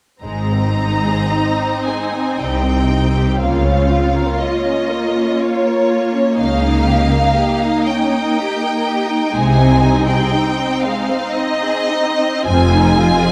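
A smooth, even first violin section carries the serene, lyrical melody up front in this slow, rubato romantic movement for string orchestra in Ab major and 3/4 at 51-62 BPM, over a focused second violin line, lush violas, a distant cello section and a clear double bass section with light vibrato, all bowed in a wet recital hall reverb as the harmony moves from Ab through Eb7/Db to Fm7 in a passage cut from a longer piece.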